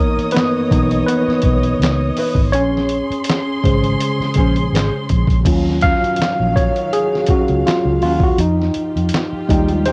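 A dry, tape-worn home cassette recording, cut from a longer piece, carries a sultry, smooth neo-soul R&B groove in 4/4 with a light swing, moving through minor ninth chords from Dbm9 to Fm9. Up front, a slightly out-of-tune tine electric piano with light overdrive takes the solo through its built-in speakers. Around it sit a gritty, compressed sampler-style drum kit with thumpy kick, fat snare, hi-hat, handclaps and crash, a round, punchy foam-muted electric bass with tube saturation, and lush, woody bowed strings with vibrato holding sustained chords, while a small thumb-plucked nylon-string guitar with finger squeak joins in the background at 1.8 seconds.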